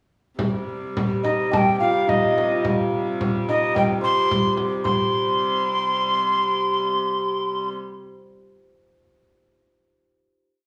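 A band playing live in one room is bathed in a wet, large studio reverb, giving this short, complete medieval dance a mysterious, ancient air in a straight 2/4. From 0.4 seconds a dark, woody hurdy-gurdy sounds a wheel-bowed drone up front, joined by a small, bright frame drum played with soft hands in an evenly spread pattern, close and dry. At 1.2 seconds a breathy alto recorder enters up front with a modal melody full of ornaments, its soft attack, vibrato and rolled-off highs giving it a gentle wooden voice. A mellow hammered dulcimer shimmers beneath, playing the same line with its own ornaments. The dance speeds up through its single section into a final chord at 4.8 seconds; the drum falls away shortly after, and the dulcimer is the last to ring.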